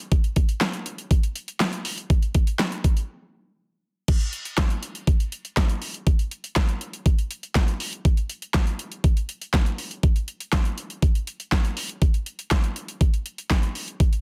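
A straight 4/4 pop groove at 121 BPM drives this cool, driving excerpt from a longer piece, carried entirely by an up-front, overdriven electronic drum kit of layered knocking kick, fat snare, handclaps, warm hi-hats and crash cymbal that starts at 0.1 seconds, pauses for a break from 3.1 to 4.1 seconds, then pushes on into a new section under light reverb and a dense, heavily limited modern master.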